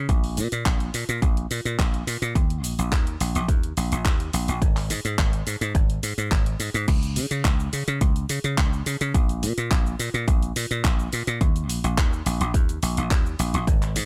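Nu-disco with a feel-good, sunny mood, this short cut from a longer piece rides a straight 4/4 groove. A dry thumbed slap bass, electric and bright with a foam-muted, punchy attack, sits up front from the very start and carries sidechain pumping. An electronic kick drum, layered and tape-warm, hits hard and forward, re-recorded in a large room. A house drum kit of cabasa, crash cymbal, handclaps and hi-hat sits lower in the mix, sharing that large-room, produced character. After an opening passage, a drop arrives at 6.9 seconds and runs to the end, with the overall sound kept close and nearly free of reverb.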